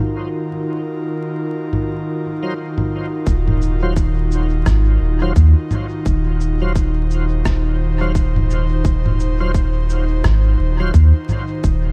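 Meditative and hazy, this ambient dub fragment, cut from a longer piece, moves at 86 BPM in 4/4 with a 60% swing on the sixteenths, set in Eb dorian with tuning at A4 = 439 Hz. An airy, breathy pad with a detuned, chorused shimmer holds sustained chords from the start, carrying a filter sweep through the opening, while sampler-style electronic congas, cabasa and rim click, pitched down and muffled, drift in at 1.7 seconds through studio reverb and dub echo. A bright, shouting tonewheel organ adds lightly overdriven stabs with key click, chorus vibrato, a slow rotary speaker and dub echo, sitting low in the balance. At 3.3 seconds the music moves into its second section as the harmony shifts from Ebmadd9 to Ebm69, and a deep, round, soft sub bass arrives up front alongside a tight, overdriven electronic kick re-recorded in a small room. The production is dark and dry overall, dusted with vinyl crackle.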